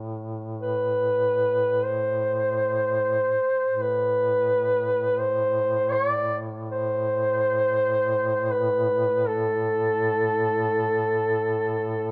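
Unfolding in free time, this longing, solemn Caucasian folk lament in A minor opens with a warm duduk holding a low A2 drone with vibrato, scooped notes and a smooth top, and at 0.6 seconds a mellow, roomy duduk enters up front with a vibrato-laden melody between A4 and D5, all set in light reverb and captured by close, detailed microphones in a short cut from a longer piece.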